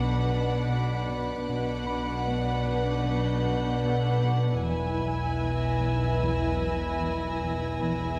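Hushed, sul tasto chamber strings open this uneasy, ominous suspense-score fragment at 76 BPM: a violin section sings a smooth melody between F#5 and G#5 over a second violin line and a faint high violin texture, with vibrato violas, a dark cello riff, a second, very quiet cello section and pure, floating double basses holding the bass, while glassy, ethereal glass-harmonica chords, a ringing harp that stops at 6.2 s and a detuned, chorused organ-like drone entering at 0.2 s shade the move from Bm to E, heard from further back in a wet scoring-stage reverb.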